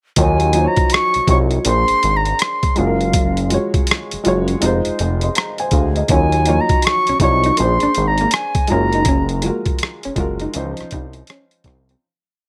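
A dry, close-sounding recording carries this smooth, soulful R&B and neo-soul piece, built on a swung, compressed boom bap drum kit with a thumpy kick, rim clicks and hi-hat in a slow sixteenth-note groove, beneath a fat, saturated analog bass that lays back with muted ghost notes and chromatic approach notes. A woody, slightly detuned upright piano pushes drop-2 chords through lush ninth harmonies with grace notes and short fills, while a pure, warm concert flute sings a motif-based hook with vibrato and a soft attack, falling away at 9.4 seconds. From 6.1 seconds an electric guitar through a small old amp adds slightly broken-up, lo-fi muted single-note picking with a phaser, and the track fades out from 9.1 seconds.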